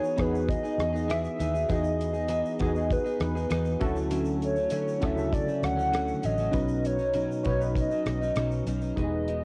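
A hollow, woody clarinet-like synth lead carries the melody from the start over bright, clean picked electric guitar with lush chorus and vibrato, mellow chorused analog keys and a damped, dry 70s drum kit of kick, hi-hat, rim click and shaker, while a dark, foam-muted fingered bass joins at 0.2 s in this laid-back, nostalgic indie bedroom-pop piece at 99 BPM in E major, which moves through Emaj7, Dmaj7 and Badd9 under light reverb and the soft haze of a cassette home recording.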